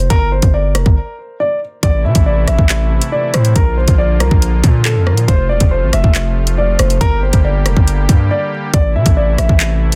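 A half-time 139 BPM drill beat in A phrygian sets a dark, cold mood, with an up-front electronic kit of hard-clipped kick, bright hi-hats, handclaps and rim clicks alongside a distorted, saturated 808-style bass with a fast attack and noise layer, while a mellow baby grand piano carries the intimate melody through delay with audible action noise, and a soft, shimmering pipe organ with strings celeste enters at 1.8 seconds with romantic sustained chords, the whole cut from a longer piece and given a dense, heavily limited modern master with brief breaks at 1.0 and 8.3 seconds.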